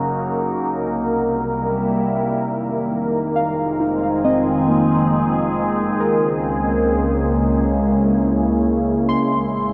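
Bathed in a huge, wet reverb, this reflective and melancholic ambient fragment in F minor at 68 BPM rests on an up-front, dark, morphing wavetable pad with phaser and a warbling, detuned vintage character, over a lush bowed double bass section with smooth vibrato, while muted, felt-like synth keys with chorus and diffuse delay enter at 3.4 s with intimate arpeggios.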